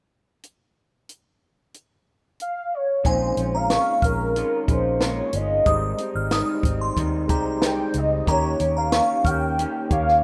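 A straight 4/4 groove at 92 BPM opens at 0.4 seconds on a compact, dry cocktail drum kit with a high-tuned snare and punchy kick up front, setting a wistful, hazy bedroom-pop mood in Bb dorian. A velvety, detuned sawtooth synth lead carries the melody from 2.4 seconds with lush chorus and slapback echo. At 3.0 seconds the band fills in over Bbm11, Abmaj7 and Eb7 with a round, foam-muted vintage bass, a slightly broken-up lo-fi guitar through a small old amp with subtle chorus and vibrato, and a barky tine electric piano tucked in the background. A crystalline FM synth bell follows at 3.1 seconds, adding a glassy second line, all in a rough home-demo mix with light reverb.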